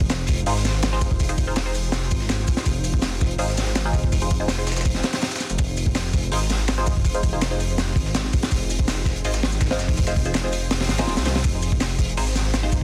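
Drum and bass with a jungle edge, this raw, nostalgic clip from a longer piece rests on a single minor-seventh chord, pairing an up-front, saturated breakbeat kit (tight kick, high-tuned snare) with a gritty, overdriven soul sampler kit of hi-hat, shaker and snare sitting in the background, joined by a rumbling, beating detuned saw bass and muted, nasal dub chord stabs coloured by phaser and dub echo, all wrapped in light reverb, vinyl crackle and a dense, heavily limited master.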